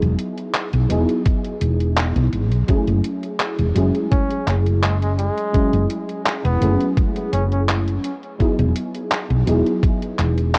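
A vibrato-laced flugelhorn drifts through a brief jazz-style solo from 4.1 to 7.6 seconds over a woozy, faded vaporwave groove at 84 BPM in E major, where a soft, round FM electric piano with chorus and tape echo glides between Emaj9 and F#m9, a dark, hollow-bodied fretless bass sits up front with tube saturation, a detuned 8-bit drum machine ticks out handclaps and hi-hat with gritty 12-bit sampler texture, a thumpy electronic kick joins at 1.3 seconds, and the whole fragment wobbles under a worn cassette haze of warbling pitch drift.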